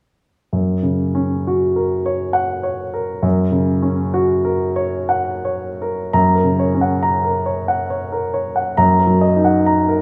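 A polished grand piano, close and up front, carries this passionate, lyrical romantic character piece alone from 0.5 s to 10.0 s. It moves in a flowing triple metre with free rubato, so the pulse breathes and stretches like an expressive song. The tone is present and warm, with short sustain on each note, and its range reaches from deep bass to a bright upper register. At 6.1 s a new section begins, and a minor chord colours the harmony at 8.8 s. A wet recital hall reverb with a 1.3 s decay surrounds the piano, and the passage is cut from a longer work.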